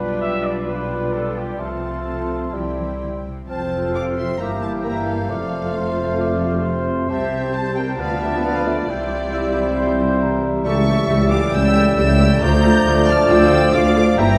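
Urgent and dramatic, this fast romantic orchestral passage, cut from a longer piece, moves at 134 BPM in 4/4 with a rubato feel, starting in F major and turning to D minor from 10.7 s. A close, smooth symphonic violin section carries the melody with vibrato, while a distant studio violin section adds a lush second line with portamento, joined by a clear clarinet, a mellow solo cor anglais and a hollow, airy small flute group in the background. Beneath them, a roomy bassoon and a focused viola section fill the accompaniment, French horns hold soft-edged chords, and a vintage-toned trumpet section adds stabs. A rich cello section and an expressive double bass section anchor the bass, and a tight, very quiet trombone section enters at 3.5 s with sustained chords. The harmony passes through C and diminished chords before an A7/C# leads into D minor at 12.4 s, all set in the reverberant bloom of a recital hall.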